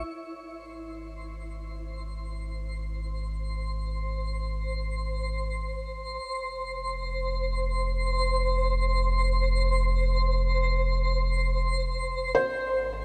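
A cassette-tape recording steeped in a huge ambient reverb with an 8.3-second decay opens this weightless, serene ambient piece in Ab major, drifting in free time. A deep, round sine sub bass sits up front between F1 and Ab1, fading in alongside a twinkling granular texture whose sparkling, octave-up FM shimmer carries its own reverb and a long release. The harmony rests on Ab, shifts to an F5 chord at 6.2 seconds, and returns to Ab at 12.4 seconds. At 12.3 seconds a felt-muted upright piano enters on C5, its soft, intimate voice placed close to the listener. Cut from a longer piece, the passage hovers in a calm, suspended stillness.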